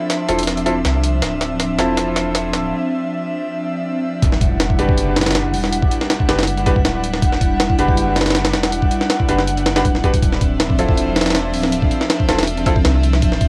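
A breathy, detuned chorus pad and bright grand piano stabs through a low-pass filter and dub echo open this dark, atmospheric drum and bass and jungle piece at 160 BPM, joined almost at once by a gritty, pitched-up sampler drum kit with a thumpy kick and high-tuned snare and a round, deep dub sub bass, moving through a drum fill and a break into the drop at 4.2 s, where a faint electronic impact lands, all captured as a home cassette recording in a booth with moderate ambience.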